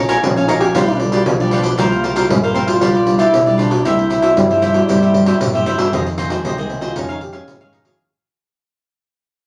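Heard through a phone in a club-like room with light reverb, this nostalgic, yearning samba-and-choro excerpt sets a breathy trombone's distant, whispered jazz melody with light vibrato over a raspy, growling trombone second line that falls silent at 5.7 seconds, crisp picked cavaquinho, a background nylon-string guitar with thumb-plucked finger squeaks, a round, punchy dub electric bass and a jingly, vintage pandeiro, before fading out from 5.9 seconds.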